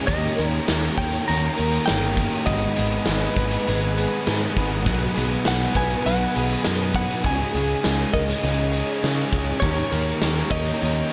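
Wistful and blissful, this short cut of shoegaze-leaning dream pop rock moves at 101 BPM in a straight 4/4, cycling through D#7, G#m7, B6 and C#sus2. A punchy, up-front arena drum kit and a bright picked electric bass drive it, while an overdriven electric guitar with reverse reverb and a thick, distorted fuzz guitar churn out riffs in the background. A compressed, clean, direct-recorded electric guitar carries the melody through digital delay, over shimmering, octave-doubled twelve-string acoustic arpeggios and the silky, slow-attack chords of a vintage string machine, all in a light small-room reverb.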